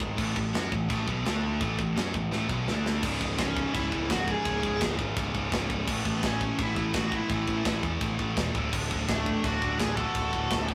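Relentless and heavy, this heavy metal excerpt drives at 168 BPM in 4/4 in C# phrygian. A pair of bright, picked high-gain rhythm guitars sits in the background over A5, D5 and C#5 power chords, while an overdriven fuzz bass and a tight, up-front drum kit with bright cymbals, china and crash push hard, and a drum fill at 2.3 seconds leads into the next section. A warm, distorted lead guitar melody enters at 3.4 seconds, with a second lead line joining at 9.1 seconds, all captured in a rough rehearsal-room sound with warm saturation and moderate reverb.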